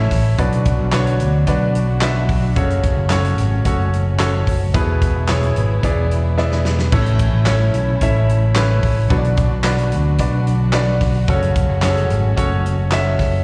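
Heard as a live gig through the venue's PA with recital hall reverb, this hopeful, anthemic piano-driven pop excerpt at 110 BPM in 4/4 sets a clear, polished concert grand with slapback echo over a punchy fingered electric bass, a natural country drum kit with bright cymbals, handclaps and a medium-tuned snare, and a dark, woody, lush string section sustaining chords in the background through Bm, F#m, E and A, with a piano fill at 6.1 seconds and a drum fill at 6.4 seconds.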